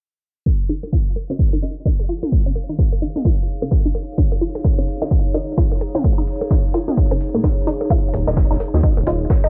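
This home recording on cassette has a dry, lo-fi sound, filtered and softened by tape, with a filter sweep running through the whole passage cut from a longer minimal techno piece. The mood is quirky and cool, and a 16th-note swing gives the 4/4 groove a loose shuffle. A punchy analog kick sits up front, while a quiet electronic hi-hat, tape-warm electronic percussion blips and toms with analog delay, and a loose acoustic drum kit fill in the background; that kit's hats pump and its snare sounds fat in a pumping room. A juicy, squelchy blip pluck carries the riff, bright and detuned with a phaser and delay, and muted dub chord stabs arrive at 1.3 seconds, deep and decaying with chorus and echo. A warbling, nostalgic pad fades in from 2.6 seconds, dark and swimming in chorus, tremolo and reverb, and a rubbery, hollow square bass bounces in up front at 8.1 seconds with a sidechain pump.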